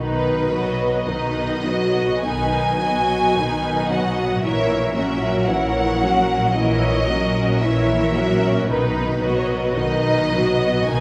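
Serene and warm, this slow romantic movement for string orchestra in B major breathes with rubato at 56 BPM, moving from B to F#7/A# at 4.4 s and settling back on B at 8.7 s. A focused, vibrato-laden first violin section carries the melody up front while a more distant second violin line and smooth, even violas fill the middle, all bowed and lush. A rich cello section sits close yet in the background beside a chamber-sized double bass section, and the whole passage, cut from a longer piece, is heard from further back in a concert hall with a wet reverb of about 1.9 seconds.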